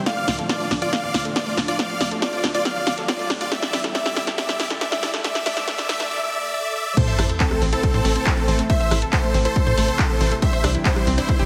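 Uplifting trance at 139 BPM in A minor, euphoric and bittersweet, taken from a longer piece. A build-up over Dm and Em carries a drum fill from the punchy analog drum machine, whose up-front snare, handclaps, hi-hat, rim click and crash sit beside a dry, punchy electronic kick. A very quiet riser, swell and sub drop runs from 0.2 to 8.7 seconds, and the drop lands at 7.0 seconds on Am with an impact, moving to Cadd9 at 10.4 seconds. A huge, bright supersaw lead carries the melody with digital delay, joined by a catchy plucky unison lead with vibrato on a second line and a round, warbling analog pluck playing arpeggios in the background. Beneath them, a thick, detuned pad holds sustained chords with chorus, and a tight, dark sequencer bass drives the low end, with the pad, leads, pluck and bass all pumping against the kick. A lush hall reverb surrounds the mix, which has a heavily compressed, radio-like sound.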